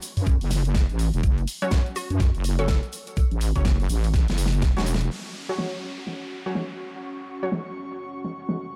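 A dark, dry, warm-toned bass house excerpt at 124 BPM in F# minor, aggressive and bouncy with swung 16ths, built on a knocking up-front electronic kick, a big-room kit with a huge low-passed snare and hats, a grainy egg shaker, and a heavy, saturated wobble bass that pumps under the sidechain, while bold orchestra-hit-like stabs with tape echo, a brief hollow square pluck, a drum fill from 4.1 s, and then from 5.1 s a downlifter and an airy, breathy pad are joined at 7.4 s by a deep, moody ambient pad with a filter sweep in the background.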